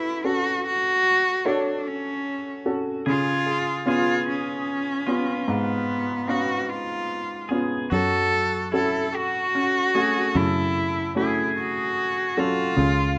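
A dark, boxy bowed cello with vibrato sings the melody up front from the start of this intimate, nostalgic acoustic folk-pop ballad in a slow 6/8 at 50 BPM, joined by a clean, compressed pedal steel guitar tracing a second line with fingerpicked slide and volume swells, a woody upright piano with audible action noise carrying the accompaniment, and a mellow felt-muted upright piano rippling arpeggios in the background until 10.4 seconds. The harmony moves from F#m to C#7, and a round, foam-muted fingered electric bass enters at 7.9 seconds as it returns to F#m, all in a rough home demo mix with light small-room reverb.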